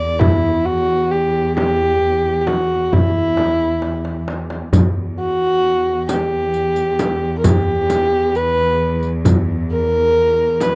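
A Turkish makam ensemble piece in E makam nikriz, cut from a longer work, moves at 133 BPM in a straight 10/8 with a longing, hypnotic mood, as a dark, woody kamancheh carries the melody up front with vibrato and portamento over a rich, lush cello section holding a bowed drone on E2. A crisp, deep metal-shell darbuka set back in a large room and a small, bright frame drum played with soft hands come in at 0.2 seconds, and after a drum fill the riq's bright jingles join at 4.7 seconds. The sound is a dry, close 1970s-style studio recording with light reverb.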